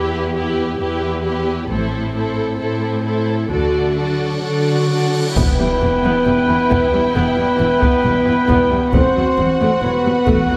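Dark, up-front trumpet stabs break in at 4.0 s alongside a huge cymbal swell and impact, driving this relentless, dramatic passage of epic orchestral film score in E minor at a slow 67 BPM, with compressed, saturated taiko drums played with hard sticks joining at 5.4 s. Beneath them, a distant violin section carries the melody over a focused second violin line, lush viola accompaniment and mellow French horn chords, while a close cello section holds the bass, deepened from 1.7 s by soft-attack double basses. The bowed strings sing with vibrato in a moderate scoring-stage reverb, and the harmony moves from Em through Am and D, returns to Em, and ends on F#dim over E.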